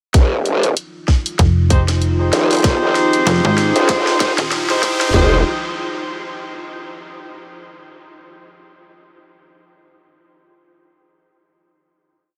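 Gritty and swaggering, this short glitch hop piece is one continuous build in swung 4/4 that resolves onto a held Fm9 chord at 5.1 seconds. A layered electronic drum kit sits up front with a tight kick, floor tom and cracking snare in a small room, while a second, quieter kit adds closed hats and snare in a swung beat with edits. A growling, saturated bass carries modulated phrases with changing wobble speed, and from 1.4 seconds a snappy FM bass with a metallic attack adds chopped phrases. A jazz-style horn section plays sparse, echoing stabs in rootless voicings with light vibrato, over a deep, detuned analog pad with a slow attack and sidechain pumping. A very quiet riser enters at 2.1 seconds as a filter sweep and drum fill drive the build, and the mix is soaked in a huge, dreamy reverb.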